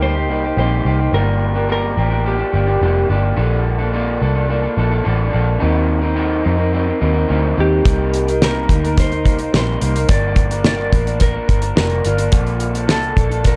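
Hazy and laid-back, this excerpt of indie and bedroom pop at 107 BPM drifts through Cm7, Gm7, Bbmaj7 and Ebm6 chords, with a slightly broken-up, lo-fi electric guitar through a small old amp carrying the accompaniment with subtle chorus and warbly pitch drift, a round, foam-muted picked bass sitting up front, and a clean, compressed, fingered lead guitar bathed in lush chorus, plate reverb and analog delay that carries the melody, pauses at 3.1 s and returns at 7.6 s, before a dry 70s drum kit with a fat snare and tight kick joins at 7.9 s in a dark, warm production.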